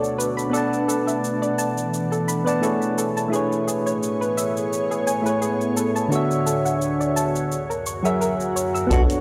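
A dry, gritty hardware sound is dressed in a lush digital hall reverb, giving this relaxed sunset chillout excerpt a smooth glow at 86 BPM in 4/4 with a light sixteenth-note swing. Mellow electric-piano-like synth keys sit up front with chorus and tape echo, while an ethereal, airy pad holds bright, detuned chords through ensemble chorus, phaser and a filter sweep. A dark, round pluck joins at 0.2 seconds with gentle arpeggios, its ring-modulated edge softened by chorus and tape echo, and electronic cabasa and hi-hat tick quietly underneath with a small-room tone. The chords move from Bm9 through Amaj9 and Dmaj7 to F#7. At 8.9 seconds a deep, nasal analog bass, a very quiet layered kick and a brief fingerpicked nylon-string guitar note with fresh-string squeak arrive just as the piece is cut off.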